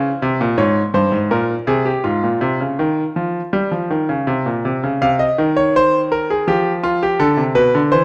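A dark, warm production sets this recording in a recital hall with a moderate reverb that lingers for about 1.5 seconds. Within that space, a solo grand piano sits up front, its tone bright, brilliant and polished, with a short sustain. The music is a classical, baroque-style two-part invention in F minor, moving at 82 BPM in a straight 4/4 with a driving, serious character. The piano ranges from G2 up to F5 across this short cut from a longer piece, opening on a chordless stretch before passing through Db5 over Ab, C5 over Bb, and F5. At 5.0 seconds a new section begins, settling onto a rootless F minor over C and then a G seventh over F at 6.5 seconds before the passage ends at 8.0 seconds.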